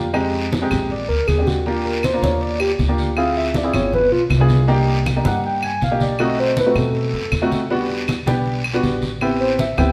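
A pure, round sine synth lead with chorus and vibrato enters at 0.9 s to solo over a sultry yet fiery Afro-Cuban jazz groove, where an intimate baby grand piano with audible action noise and a dark, thumpy pizzicato upright bass carry rich jazz chords beneath thick-skinned low congas, woody claves set in the background and a raspy, vintage guiro, all heard as a live band in a stone room with reverb in this short cut from a longer piece.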